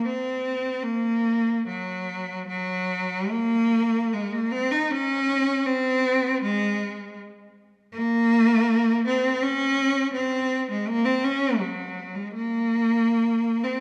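In a rubato 3/4 that drifts between 68 and 86 BPM, this serene, lyrical classical excerpt features a lone bowed cello, clear, smooth and even, with vibrato, singing between Gb3 and Eb4 at a tuning of A4 = 436 Hz throughout its 13.8 seconds, set in a wet concert hall reverb with a 1.9-second decay.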